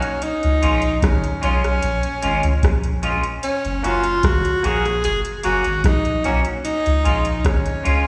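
A bright, close-miked tenor saxophone leads this uplifting, laid-back roots reggae excerpt at 75 BPM in F# major, singing an up-front, vibrato-laced melody dressed in dub echo and plate reverb. A clean, twangy electric guitar adds accompaniment through lush chorus, slapback and dub echo, while a soft vintage rhythm box supplies a deep kick, metallic hi-hats and rim clicks, and a round, mellow dub sub bass enters at 0.4 seconds. Chords move from C# to F# and back to C#, and the whole thing sounds like a live gig heard through the venue's PA, with recital hall reverb and small room ambience.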